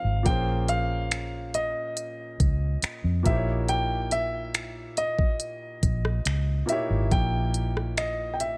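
A moody, late-night contemporary R&B excerpt at 70 BPM in 4/4, set in a studio reverb, where a warm, up-front grand piano carries the melody between Eb5 and G5 with delay, its action noise audible, while a second, clear and intimate grand piano accompanies beneath it. A vintage foam-muted fingered electric bass sits dark, round and punchy from Ab1 to F2, and from 0.3 seconds a tape-warm electronic R&B kit adds finger snaps, smooth hi-hat, rim click and a knocking kick. The harmony moves from Bbm7 to Eb7b9/Bb at 3.3 seconds.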